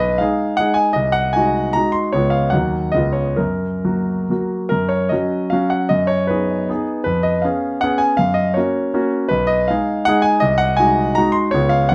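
Proud and rustic in character, this short romantic classical passage is a triple-time dance in 3/4 with dotted rhythms, taken from a longer piece. A solo concert grand piano carries it alone from start to finish, its tone polished and up front with a deep bass, ranging from B1 to B#5. The tempo moves freely with rubato, anywhere from 124 to 175 BPM, giving the dance a flexible, spoken lilt in F# major. The harmony circles through G#m/B, G#7/B#, C#7 and D#m before settling on F# at 3.4 seconds, and the opening idea returns at 4.7 seconds over a bare F#5. From there it moves through G#m7/F# and C#7/E# back to F#, then revisits the earlier progression and breaks off on C#7, all within a light reverb.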